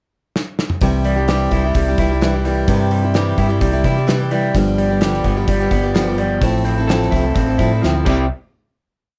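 A dry recording with little reverb opens this short folk rock and heartland rock piece, where a loose drum kit in a pumping room plays a fill at 0.3 seconds before the band enters at 0.8 seconds with an open-road, warm mood. Up front, a picked dreadnought acoustic strums sixteenths in open chord shapes, a slightly broken-up electric guitar through a small old amp plays dark picked arpeggios, and a round, hollow-body bass locks to the punchy kick beneath dark cymbals and a medium-tuned snare. The verse moves from C to G7 and Fmaj7/A before returning to C, and a final hit lands at 8.3 seconds.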